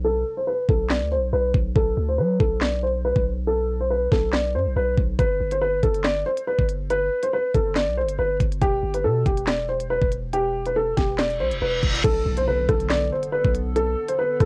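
Drill-style hip hop with a menacing, ominous half-time feel, this excerpt opens on a dark, woody upright piano with audible action noise and a slight detune, its melody filtered during a break that lasts until 5.2 seconds, over a deep, sine-like 808-style bass whose long notes decay. The electronic drill kit, with a knocking kick, sharp snare, rim clicks, handclaps, crash and crisp hats, carries a cassette-tape grit, while an electronic impact marks the start and a reverse cymbal from 11.4 seconds leads into an impact at 12.0 seconds. There a hollow, flute-like pad with chorus joins on sustained chords, all in a dry home cassette recording.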